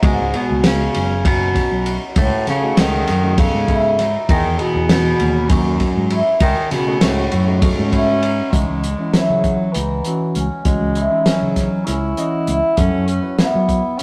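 A brooding, intricate progressive band piece in 7/8 at 198 BPM in C# minor opens with a muffled, up-front soul drum kit with a fat snare and dark cymbals, an amped fretless bass, hammered cimbalom arpeggios that shimmer, and a bell-like tine electric piano in accompaniment, while a clear, distant bass clarinet takes the classical-style melody from 0.1 seconds. A bright, compressed semi-hollow electric guitar adds a picked second line until 8.2 seconds, as the harmony moves through chords such as G#m7, Emaj7, C#madd9 and F#m7. The rough rehearsal-room recording sits in a moderate stone room reverb, and the passage is cut from a longer piece.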